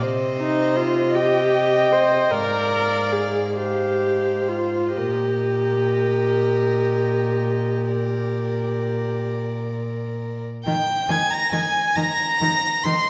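Heard from further back in a reverberant recital hall, this tender fragment of a slow romantic string quartet movement in Eb major drifts in a rubato 12/8 at 41-54 BPM, with all four players bowing softly sul tasto: the first violin floats a pure, high melody; the second violin adds a rich, vibrato-laden second line with an airy bow; the intimate, up-front viola, entering at 0.4 s, offers light-vibrato accompaniment; and the cello grounds it all with a warm, smooth-topped bass.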